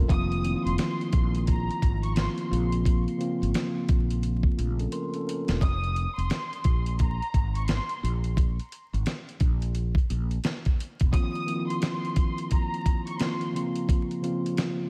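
Mellow tine electric piano and a round fretless bass open this tough, dark boom-bap hip-hop excerpt at 87 BPM in 4/4, with a swung sixteenth-note feel, light reverb and a layer of vinyl crackle. The piano has a clean, tape-worn, filtered tone, while the dark bass sits up front with analog chorus; the bass stops at 11.1 seconds just as the piano returns. A dusty, compressed sampler-style kit of hi-hat, thumpy kick and fat snare sounds gritty and up front, and a drum fill at 4.9 seconds marks the turn into the repeat. High above, a woody studio violin section carries the melody with vibrato, filtered and bathed in diffuse ambient delay. The chords move from F7sus4 to Bbmadd9 and Fsus4, pass through a chordless stretch, then come back to F7sus4 and Bbmadd9.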